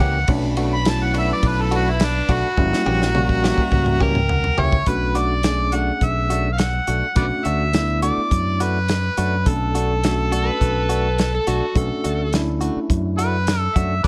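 A gritty, overdriven harmonica with slapback echo opens this brooding, smoky soul-blues excerpt over bowed strings that drop out by 4.8 seconds, stabs from a clean, compressed electric guitar, a round fingered bass, a tight soul drum kit with dark cymbals and a drum fill, and a tine electric piano that adds its own fill, while an overdriven slide guitar briefly plays a second line between 10.3 and 12.3 seconds.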